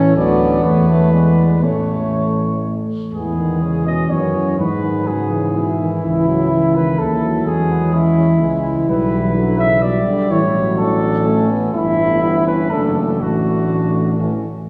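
Classical brass quintet music in 3/4 at 124 BPM, triumphant and warm in mood, moving from A major into E major at 3.1 seconds as a dark, distant cornet with light vibrato carries the melody over a soft-attacked, smooth-topped trumpet second line. A mellow, vintage-toned trombone and a present French horn fill out the accompaniment in the background, while an up-front tuba anchors the bass with a soft attack. The ensemble is heard from further back in a concert hall with a long, wet reverb, and this cut from a longer piece closes on an A chord at 14.2 seconds.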